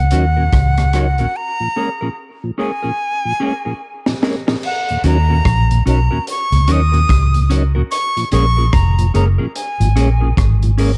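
A laid-back 73 BPM roots reggae groove in 4/4 with a swung sixteenth feel rides on a gritty, saturated breakbeat drum kit with a punchy kick, high-tuned snare and dark cymbals, under a round, foam-muted fingered electric bass sitting up front in Eb minor. A mellow tonewheel organ with chorus vibrato and slow rotary speaker moves between Ebm7 and Bbm7, while a clean fingered electric guitar adds spring reverb and tape echo. Over this serious, dark-toned cut from a longer piece, a breathy, reedy jazz flute with a crisp, chiffy attack and tape echo carries the melody, with a break starting at 1.3 seconds and a drum fill from 3.0 seconds leading into the next section at 4.6 seconds.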